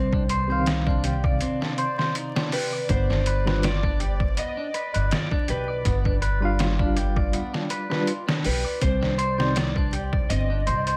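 Vinyl crackle runs through a digital ambience, giving this smoky, brooding trip hop excerpt a dusty, close feel. An up-front sampler-style drum kit, pitched down and overdriven, sets a gritty pulse with a thumpy kick, a medium-tuned snare and hi-hat over a lightly swung 4/4 groove, while a woody pizzicato upright bass sits just as far forward in the low register. A twangy clean electric guitar picks bright, compressed arpeggios through tape echo, and above it an electric slide guitar, played with fingerpicks and slightly broken up, carries the melody through dub echo. A worn, slightly out-of-tune tine electric piano with medium tremolo and tape echo adds mellow accompaniment from 0.5 to 9.6 seconds. A very quiet, tense string-like drone holds a single high note in the background as the harmony moves from Cmadd9 to G7 at 2.9 seconds and back to Cmadd9.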